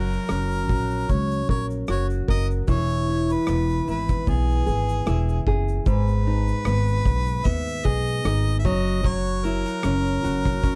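This acoustic pop excerpt feels tender and reflective, moving with a gently swung lilt over a chord cycle of F#, E, G#m and back to F#. A clear harmonica carries the melody in a pop style, with light vibrato, scooped notes and a smooth top end. Beneath it, a small, fingerpicked nylon-string guitar sits up front, and a woody, thumpy upright bass with gut strings is plucked pizzicato close to the listener. A loose indie drum kit enters at 0.1 seconds with a punchy kick, rim clicks and shaker in a pumping studio room, its top end rolled off. The production is dark and warm with little reverb. The harmonica, guitar and drums play through to the end of the 10.8-second cut, while the bass stops just short of it at 10.6 seconds.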